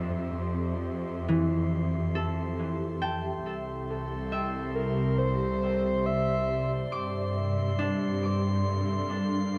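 A rich, bowed symphonic cello section sits up front in this peaceful, luminous ambient excerpt, holding a smooth, lush bass line with vibrato and a touch of tube saturation. Around it, an ethereal, airy pad fades in with sustained chords, thickened by ensemble chorus and shimmer reverb. A concert harp rings out fingerpicked acoustic arpeggios through shimmer reverb and dub echo, while a glassy texture of drifting overtones fades in high above, calm and bright. From 3.9 to 6.7 seconds a breathy, flute-like synth lead carries a brief, soft melody with vibrato, chorus and echo. In F major at a slow 69 BPM, the harmony moves from Fmaj7 to Cadd9 to Gm7, and the mix is steeped in a wet plate reverb, heavy echo and a cassette-tape character.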